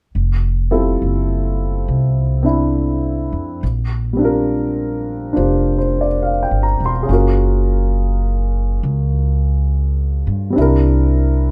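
Romantic and intimate, this short jazz passage, cut from a longer piece, moves at an unhurried, swinging pace. A pizzicato upright bass opens at 0.1 seconds, its steel strings giving a woody, up-front tone. The concert grand piano joins at 0.7 seconds as accompaniment, natural and close, with deep bass and the soft mechanical sound of its action audible beneath the notes. The harmony drifts from Fmaj7 to Bb6, then to a colourful Gbmaj7 before settling on C7 at 10.6 seconds, just ahead of the close. Light reverb and a dark, warm production wrap the duo in a cosy late-night glow.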